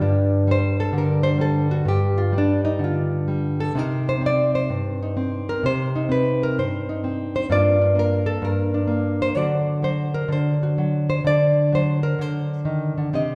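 A wet recital-hall reverb with a 1.6-second tail surrounds this short passage, recorded in a church or concert hall and cut from a longer piece. It is solo jazz in G minor with a moody, cool feel, set at 128 BPM in 4/4, with the eighth notes swung at 68% and the time loosened by rubato. A single nylon-string guitar plays throughout, its dark, classical acoustic tone sitting up front in the sound. The fingerpicked lines range from G2 to Eb5, and finger squeak is audible against the hall's ambience. The harmony moves from G7 with its third omitted at the start through Cm at 3.8 seconds and Gm7 at 7.5 seconds before settling on D, with the instrument tuned slightly sharp of standard, to A4 = 441 Hz.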